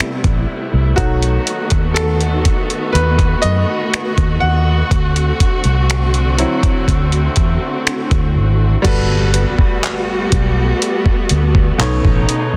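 Contemporary R&B at a slow 61 BPM in 4/4, moody and late-night, cut from a longer piece: a clear, worn grand piano carries the first 8.8 seconds as a solo over lush bowed strings with expressive vibrato, a dark, round foam-muted electric bass and a gritty, tape-warm sampler-style kit with a thumpy kick, finger snaps, handclaps and a softly clipped snare, moving through Am7, B7 and D7. At 8.8 seconds the harmony shifts to Gmaj9 and later B9, while a very quiet electronic impact enters at 9.0 seconds and a faint, mellow detuned pluck on B4 briefly glints through. The bass and drums sit up front in a dense, heavily limited mix with light reverb.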